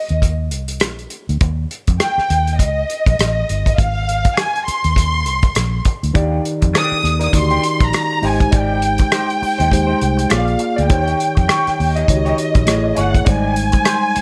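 Lush 1970s-style soul with a smooth, warm mood, this passage from a longer piece moves at an easy pace with a gentle swing on the sixteenths. A dark, woody violin section carries the melody from the opening, its bowed ensemble sound up front and rich with vibrato. Beneath it, a foam-muted fingered electric bass gives a round, amped low end, while a small-room soul drum kit with a tight kick and a rolled-off top keeps time on hi-hat, kick drum and rim click. At 6.1 seconds a mellow tine electric piano enters with clean, direct chords, joined by a slightly broken-up, lo-fi electric guitar riff with wah and spring reverb sitting in the background. The harmony glides through lush major-seventh chords, and a small room reverb wraps the whole ensemble.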